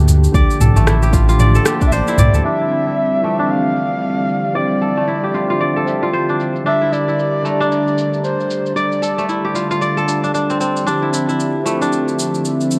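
Swung 16ths at 114 BPM in 4/4 give this earthy, hypnotic organic downtempo cut in D minor its sway, as a crisp, ringing fingerpicked kora sits up front over a barky tine electric piano through a combo amp and a smooth, detuned analog pad, both pumping with sidechain, while a mellow synth bass, a very quiet band-limited udu and a deep electronic kick drop out by 2.4 s, leaving a tape-toned afro-pop kit of cabasa, rim click and toms under a filter sweep as a breathy, flute-like synth lead carries the melody from 1.9 s to 9.3 s within a dark production with light reverb.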